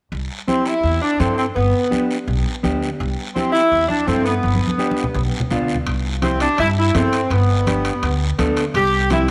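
Sunny, danceable cumbia at a brisk 167 BPM in C major, cut from a longer piece, where a tight, jazz-style saxophone section with vibrato carries the melody up front over a growly, woody pizzicato upright bass and a dark, clean, fingered electric guitar. Raspy guiro sits close and dry while bright, hard-handed congas ride in the background, and a drum fill at 4.4 seconds leads into a new section where ringing metal-shell timbales join at 5.9 seconds. The chords move simply between C and G, and a moderate echo-chamber reverb gives the ensemble a roomy glow.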